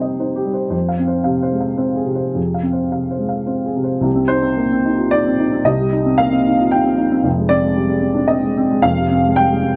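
In a loose, rubato 3/4 at 113 BPM, this short excerpt cut from a longer piece moves with a wistful, reflective sway. It is neoclassical minimalist piano in C minor, played by a solo upright piano heard from 0.0 to 9.8 s. The piano sits up front with a warm, woody, slightly detuned character, spanning from F1 up to G5. The harmony rests on C minor and F minor, returning to C minor at 4.1 s when a second section begins. Light reverb and a dark, warm production shape the sound of the recording.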